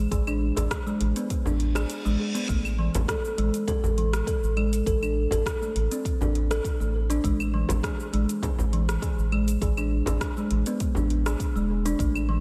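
Organic downtempo at 101 BPM in a straight 4/4, earthy and hypnotic, this excerpt rides on a round, dark analog bass with sidechain pumping sitting up front beside a woody, mellow kalimba whose arpeggios trail off into a diffuse ambient delay. A deep electronic kick and a tape-warm deep house kit of cabasa, claves, metallic hi-hat and rim click keep the pulse, joined by a close, dry acoustic frame drum. Light reverb surrounds the parts, and a reverse cymbal rises from 1.7 to 2.5 seconds while the kick drops out from 1.9 seconds, before the harmony moves from a rootless E over A to an open, chordless stretch and returns to E over A at 7.2 seconds.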